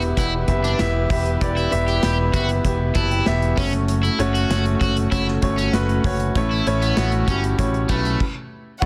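A dense, heavily limited mix with light reverb carries this hopeful, anthemic piano-driven pop excerpt at 97 BPM, where an intimate concert grand with audible action noise and long sustain accompanies alongside punchy picked bass, a dark, smooth small-room drum kit, a very quiet woody string section, and a bright, double-tracked overdriven guitar riff from 0.2 to 8.2 seconds, moving through Em, F#m and A with a piano fill and a brief stop before a lush, close violin section enters at 8.8 seconds.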